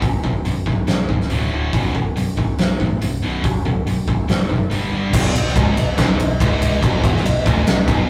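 Aggressive, driving hard rock in B minor at 141 BPM, this short cut from a longer piece pairs a scooped, high-gain guitar riff and a very quiet compressed distorted guitar with a growly fingered bass and an up-front arena drum kit with a punchy kick, all in a rough rehearsal-room sound with wet studio reverb, while a double-tracked overdriven guitar joins at 5.1 seconds as the chords move from B5, D5 and G5 to Bm.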